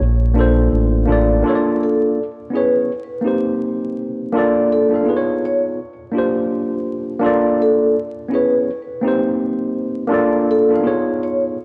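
A worn, slightly out-of-tune tine electric piano, lightly overdriven and up front, opens this dreamy, nostalgic lo-fi hip hop excerpt in Bb major at 83 BPM with a swung 4/4 feel, alongside a dark, smooth synth bass that drops out at 1.4 seconds. From 1.8 seconds a mellow vibraphone played with soft mallets carries the melody, its metallic ring shimmering with motor vibrato and tape echo over chords that move from Bbmaj7 through Dbm7, Cm7 and Db9. The whole sound is steeped in a wet spring reverb and the crackle and warbling pitch drift of old cassette tape, with its top end muffled.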